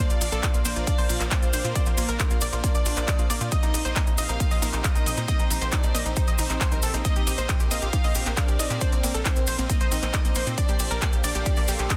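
Uplifting and soaring, this 136 BPM trance passage cut from a longer piece rides a punchy, up-front electronic kick that enters at 0.4 seconds, just after a techno kit of handclaps, smooth hi-hat and ride cymbal, a grainy cabasa, and a tight, driving sawtooth sequencer bass that pumps against the kick. A detuned unison pluck carries the melody with dub echo and sidechain pumping, while a bright, wave-folded pluck plays arpeggios in the background. A thick unison pad with chorus and phaser sustains the Bbadd9, Eb6/Bb and Gm7/Bb chords, supported by a floating, softly bowed violin section with dub echo and a very quiet, clear grand piano, all in a dense, heavily limited mix with little reverb.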